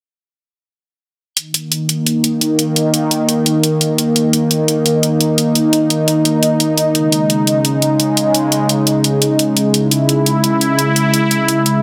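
A sweeping, resonant pad dominates this short passage of dark, technical drum and bass, holding sustained chords from 1.4 s to 11.8 s with a slow attack, long release and an evolving, airy character. Built from detuned sawtooth tones with a noise layer, filter swell and chorus, the pad sits bright and up front across a range from Db3 to Fb4, moving from an Eb5 chord to Db minor at 6.9 s. Beside it, an electronic hi-hat runs from 1.4 s to 11.7 s, its layered, bright hats carrying a tape-warm tone and placed close in the mix. The 172 BPM pulse in straight 4/4 gives the passage a mechanical, aggressive mood. A moderate, lush hall reverb surrounds the parts, and the dense, heavily limited modern master hits hard throughout this section cut from a longer piece.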